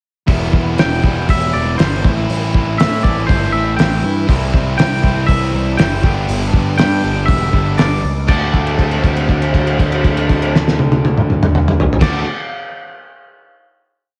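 A straight 4/4 pulse at 120 BPM drives this upbeat, jangly indie rock piece in D mixolydian, led by a cloth-damped, thuddy drum kit up front with a fat snare, tight kick and muffled, dark cymbals, and a fuzz-toned picked bass playing driving eighth notes. Two guitars ring chords in the background: one biting and overdriven with analog chorus, the other bright, scooped and distorted, both with slapback echo. A clean, twangy lead enters at 0.8 seconds with a motif-based melody in period phrases, as the pre-chorus moves through Em, Am7, C and G6 before a held D7 closes the piece from 8.3 seconds, set in light reverb and studio ambience.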